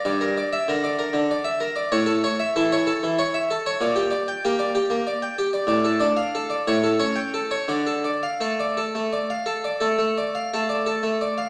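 A 12/8 pulse, counted in dotted quarters at about 56-66 BPM, moves with a free rubato through this short classical passage, a baroque-style suite movement for solo harpsichord in D minor. The mood is flowing and introspective, the lone harpsichord carrying the whole 11.5 seconds across a span from G2 to G5. Its Italian-style voice sounds plucked, brilliant and full, with octave strings adding body, and it is close-miked, dry and up front. Around it sits a recital hall reverb, lingering for about 1.4 seconds, with the overall sound heard from further back in the room through a small speaker. The harmony travels from Em7b5/G through A, Gm/Bb and Dm/A to an A7 at 6.7 seconds before settling on Dm at 7.7 seconds, a cadence within a longer piece.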